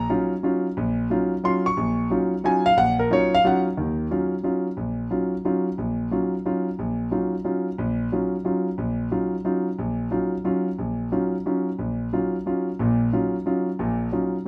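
A brisk 180 BPM jazz waltz in 3/4 with a light swing on the eighths, this intense, cool Eb minor excerpt opens on an Ebm9 chord and features a solo concert grand piano, intimate and up front with deep bass, short sustain and audible action noise, ranging from Bb1 to Db6 in a moderate studio reverb as the music moves into a new section at 3.8 seconds.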